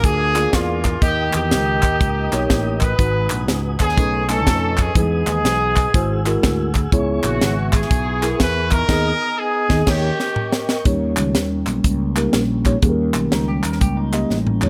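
Light reverb surrounds this short cut of swung, uptempo gospel, solemn yet fervent, where an up-front horn section with a smooth top and light vibrato carries the melody over a tight, polished funk kit with a high-tuned snare, a growly, punchy fretless bass, a mellow tine electric piano and hollow, close group handclaps. A soft, flute-like tonewheel organ with key click and fast rotary speaker holds sustained chords, then takes a solo at 10.9 seconds after a band accent and drum fill, once the horns have stopped at 10.8 seconds. A bright, twangy electric guitar slips in with a quiet second line at 13.3 seconds.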